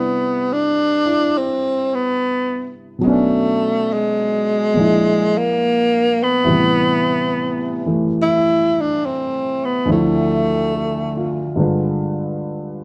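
Romantic and tender, this jazz ballad excerpt drifts along at 70 BPM in 4/4 with a gentle swing, in C major and tuned slightly high to A4 = 445 Hz. A breathy, clear tenor saxophone carries the solo melody with vibrato, close-miked and sitting up front beside a woody upright piano that provides the accompaniment until 12.8 seconds, after the saxophone stops at 11.6 seconds. Light reverb and a dark, warm production color the progression, which moves from Cmaj7 through Bm9, Bb7#11, Am9 and Dm7 to a closing G7b9.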